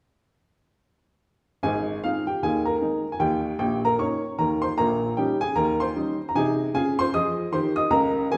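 Swung eighths at 153 BPM in 4/4 drive this playful, exuberant stride jazz fragment in Ab major, where a lone upright piano with a woody, boxy, up-front tone and short sustain plays from 1.6 to 8.4 s across a range from Ab1 to Eb6, moving through Ab, Eb7, Eb7/Bb and Ab/C, all set live in a large studio with a wet, 1.3-second reverb.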